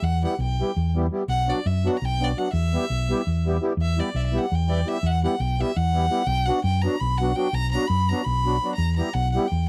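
A clear, bowed violin with smooth vibrato carries the melody up front in this bittersweet, fiery stretch of Balkan wedding-band folk, set in a quick 7/8 at 336 eighth-note beats per minute in E minor. A reedy, sweet accordion with light tremolo tuning plays the accompaniment, while a round, amped hollow-body electric bass holds the low end over Em and Bm chords. The sound is dry and close, like a 1970s studio recording with a touch of reverb, and the passage is cut from a longer piece.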